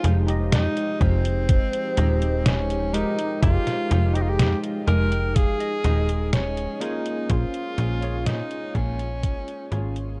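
A warm tenor saxophone carries the melody in this woozy, nostalgic vaporwave clip, its subtone and vibrato sitting present in a dark, cassette-tinged mix with a tape echo trailing its phrases. Beneath it, a bell-like, barky tine electric piano plays bright accompaniment through analog chorus, while a very quiet, warbling pad of detuned sawtooth and triangle tones holds sustained chords with a slow attack and its own built-in reverb. A snappy FM bass with a metallic, fast attack that then decays sits up front, joined by a detuned 8-bit drum machine supplying hi-hat and a medium-tuned snare, and a thumpy, sampler-style electronic kick that enters at 1.0 seconds. A clean, picked electric guitar with analog chorus plays a riff in the background and adds a fill starting at 4.4 seconds. The straight 4/4 groove moves from Fm9 to Bbm7, and the excerpt begins fading out at 4.7 seconds, cut from a longer piece with little room reverb.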